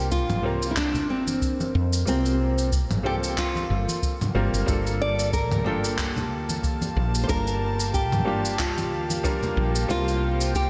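A lush hall reverb gives this short sunset chillout excerpt a big arena sound, wrapping a wistful, warm mood in G minor at 92 BPM with a gently swung sixteenth-note feel. A fingerpicked nylon-string guitar carries the melody with a deep classical tone and fresh strings, its notes trailed by digital delay and slapback echo. Beneath it, a bright baby grand piano plays the accompaniment with a brilliant, worn and intimate character, its action noise audible and its voicings touched by delay. A woody fretless electric bass sits round, dark and punchy at the bottom, while a gritty, tape-warm sampler-style kit with handclaps, shaker and toms joins a deep analog electronic kick, and compressed congas sit in the background. At 4.7 seconds, as the harmony moves from C7sus4 to Gm9, an airy, breathy pad with a slow attack and chorus fades in, adding soft sustained chords before the progression returns to C7sus4 near the end.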